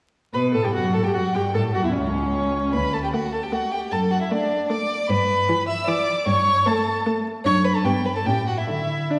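A wet scoring-stage reverb with a 1.7-second decay places the listener further back in the room, and a layer of vinyl crackle sits over the whole recording. This short excerpt from a quick classical-period movement for string quartet moves at 151 BPM in 3/4 and D major, with a graceful, cheerful mood and a flexible, rubato feel. The first violin carries the melody up front, its rich, smooth tone lightly touched with vibrato as it reaches as high as E6. The second violin and viola fill in the inner lines with an even, bowed sound and fuller vibrato. The cello anchors the bass with a focused tone and a smooth top, also placed up front. The harmony opens on Gmaj9, turns toward the dominant through A7, and settles on Dsus2 near 8.7 seconds.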